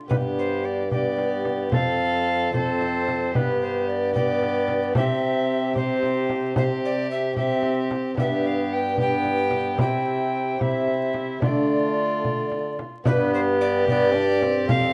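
Rustic and solemn, this renaissance-style consort dance in 6/8 at 74 BPM sets an airy, chiffy alto recorder up front over a distant, nasal gut-string violin on the second line, a bright trombone with light vibrato and a very quiet fingerpicked double-strung lute in the accompaniment, a dark bassoon with vibrato on the bass and a small, close frame drum played with soft hands, all heard through a moderate stone-room reverb and vinyl crackle in an excerpt cut from a longer piece.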